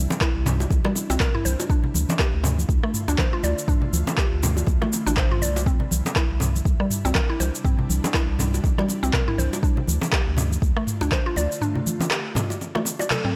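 A swung 121 BPM afro house groove in D minor, spiritual and warm, rides an up-front deep electronic kick, a tape-warm afro-pop kit of cabasa, handclaps, rim click and toms, low-tuned saturated bongos and close acoustic congas set back in the mix, while a dark, wave-folded analog bass pumps beneath woody, warbling FM mallet-like arpeggios with tape echo and an ethereal, detuned pad with phaser and ensemble chorus sustains C, Dm7 and Dm chords in the background, before a drum fill and band accent land at 13.1 seconds.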